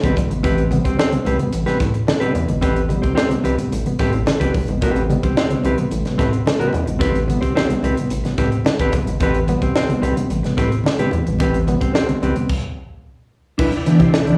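This funk excerpt opens at once with its full groove at 110 BPM in A minor, a sly, cool vamp resting on Am9. A mellow, clean electric guitar sits up front with a touch of slapback echo, while a bright, reedy electric piano punches out stabs through its built-in speakers, shimmering with fast tremolo and its own slapback. Beneath them, a rubbery square-wave bass bounces with a hollow, nasal filter pluck, and a crisp fusion kit drives the feel with a punchy kick, high-tuned snare, hi-hat and dark crash cymbals. Very quiet, low-tuned congas with a thick-skinned, vintage tone join just after the start, at 0.2 seconds. The band hits a stop from 12.5 to 13.6 seconds, after which the harmony shifts to Cmaj9 and a lightly overdriven tonewheel organ enters with slow rotary-speaker sustained chords for the final moments. The whole has the light, roomy sheen of a live club gig heard through the venue's PA.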